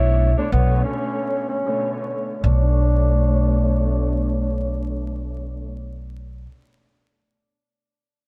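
Moody and gritty, this short hip hop fragment moves at 94 BPM in B minor with a swung sixteenth-note feel, opening on a Bm9 chord under a filter sweep that runs through the first 2.4 seconds. A mellow, breathy tenor saxophone carries the jazz-style melody with scooped notes and light vibrato until 4.3 seconds, while a lush, bowed string section supplies dark, smooth ensemble accompaniment. The growly pizzicato upright bass sits up front with a woody tone and plays on alone after the strings stop at 5.8 seconds, all set in studio reverb with a layer of vinyl crackle.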